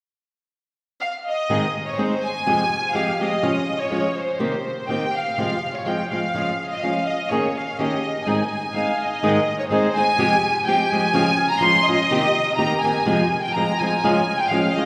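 A lush, vibrato-rich violin section enters at 1.0 s with a smooth, up-front melody, joined at 1.5 s by a fingerpicked flamenco guitar with warm, fresh strings, in this romantic and proud Mexican folk excerpt at 124 BPM in 2/4 and Ab major, moving through Ab, Fmadd9, Db, Cm7 and Fm chords within a spacious concert-hall reverb.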